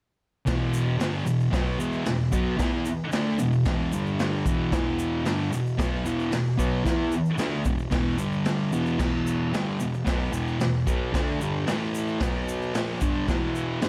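Garage rock in E minor at 112 BPM, gritty and raw, this excerpt drives a thick, double-tracked fuzz guitar riff up front over a boomy, saturated garage drum kit with dark cymbals and a pumping small-room sound, while a grainy tube shaker sits in the background and chords move from Em through G5, A5 and B5 under light reverb.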